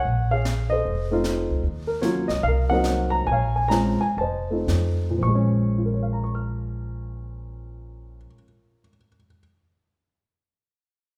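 A mellow, shadowy baby grand piano carries the melody from the first instant of this swinging, late-night jazz piano trio excerpt in Bb minor, joined almost at once by a woody pizzicato upright bass with steel strings and an airy brushed kit with a high-tuned snare, the tempo slowing between 1.6 and 5.2 seconds over a Bbm7, F7, Ebm7, Cm7b5 progression, the drums dropping out at 5.7 seconds and the bass at 8.2 seconds so the intimate piano, its key action audible, closes alone in a reverberant recital hall.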